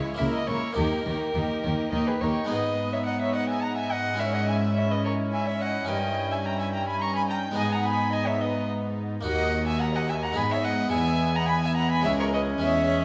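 Heard through a lush recital-hall reverb, this festive, lively passage from a baroque-style concerto movement in G# minor moves at 107 BPM in 3/4, with a dark, nasal solo violin carrying the melody up front over a gut-strung period ensemble: a soft violin section also carrying the melody in the background, a rich violin section on the second line, a reedy viola section and an airy, bright French-style harpsichord filling the accompaniment, and a close cello section anchoring the bass, joined by a double bass section only from 0.2 to 2.3 seconds.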